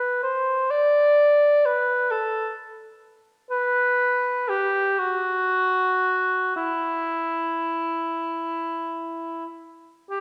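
A lone cor anglais opens this brief classical fragment, singing in E minor with a mellow, vintage tone that sits close and present. The playing is free and expressive, pulled about in rubato over a slow 6/8 lilt of roughly 26 to 44 beats per minute counted in dotted quarters. Its line stays within a modest span from E4 to D5, giving the solo a mournful, meditative character. A wet recital hall reverb with a 1.8 s decay surrounds the instrument, and the listener seems placed further back in the room. The solo voice carries the whole passage from 0.0 to 10.2 s, cut from a longer piece.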